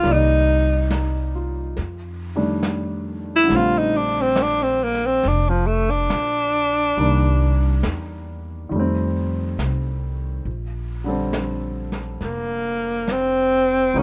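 A clear, up-front tenor saxophone leads this romantic, intimate jazz ballad at a swung 69 BPM in Bb major, soloing with vibrato and scooped notes until 10.5 seconds over a warm, present baby grand piano, a woody, growly pizzicato upright bass and a dark, smooth vintage brush kit with a rolled-off top, all in a dry sound with little reverb as the harmony moves through Cm9, F13 and Bbmaj13.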